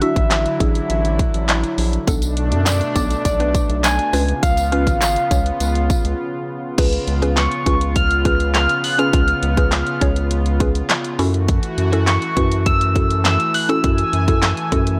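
Bittersweet and driving, this dry dance-pop excerpt at 102 BPM pairs a gentle, keys-like FM lead with a woody, phased mallet pluck and a shimmering pulse-width pad that pump in step with a deep, round analog bass over a punchy house drum kit of kick, snare, handclaps, bright hi-hats and crash, while a jingly acoustic tambourine joins from 2.1 to 6.0 seconds just before a short break at 6.2 seconds.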